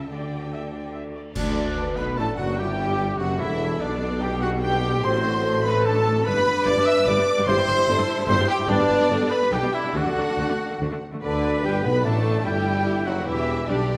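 Lively and graceful, this fast romantic movement for symphony orchestra moves at 147 BPM in a straight 3/4 in G major, dramatic in character and cut from a longer piece. Bowed violins carry the melody with lush vibrato and a soft attack, while a very quiet second violin line, background violas, a rich, even cello section and woody double basses with a mellow tuba fill out the strings and low end from the start. At 1.4 seconds the orchestra lands a band accent: bright clash cymbals and concert bass drum strike briefly, clear trumpet stabs begin, and a pure, hollow flute, a distant clarinet and a close-miked cor anglais add second lines, with the French horn section settling into sustained chords just after. The harmony moves through chords such as Bm7, Emadd9, D7/A and C/G, returning to G before closing on Emadd9, and a very quiet bassoon joins the accompaniment at 11.2 seconds as the trumpets fall away. 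A reverberant recital hall sound lends the horns, trumpets, tuba and clarinet a roomy distance behind the singing strings.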